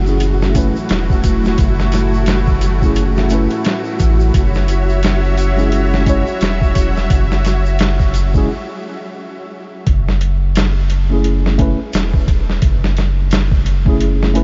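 Crackling with vinyl noise under a dulled, lightly reverberant top end, this brooding, melancholic trip hop excerpt rides a swung, pitched-down, gritty boom bap sampler kit with a thumpy kick and medium-tuned snare, a round sine sub bass held up front, a mellow tine electric piano with tremolo and tape echo, full sawtooth string-machine cellos whose chorused chords stop at 9.8 s, a faint flickering granular texture that drops out at 8.5 s, and a soft tube shaker tucked in the background.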